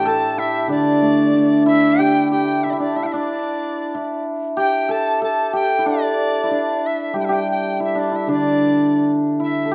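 Festive and pastoral, this short excerpt from a longer piece of Chinese traditional chamber music moves at 94 BPM in a straight 2/4, tuned slightly low at A4 = 439 Hz. A large dizi carries the melody between D5 and A5, its bamboo tone airy and reedy with a buzzing membrane, soft attacks, lifted highs and a touch of vibrato, sitting a little behind the other parts. Beneath it, one hammered dulcimer plays a bright, shimmering second line from D4 to A4 throughout the 9.7 seconds. A second hammered dulcimer, lower and warmer in tone, supplies accompaniment from A2 to D4, sounding until 2.7 seconds, dropping out, then returning at 7.1 seconds. Both dulcimers ring up front in a moderate recital hall reverb, and the overall production leans dark, with the piece shifting into a new section at 2.0 seconds.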